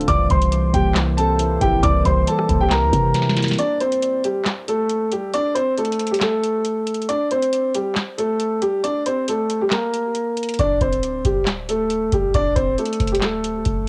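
Hard-hitting and brooding, this half-time trap hip hop cut opens with a dark, boxy grand piano melody up front, trailed by analog delay, over a mellow tine electric piano run through a phaser, a warbling, detuned ambient pad in the background, and a deep, boomy 808-style bass. After a drum fill, the electric piano, pad and bass drop out at 3.6 seconds for a break, leaving the piano and a dry, booming analog drum machine with deep kick, tonal snare, metallic hats, handclaps and rim clicks. The 808 returns at 10.6 seconds, and the cassette tape coloring on the piano, electric piano, pad and drums lends the piece a lo-fi home-recorded character.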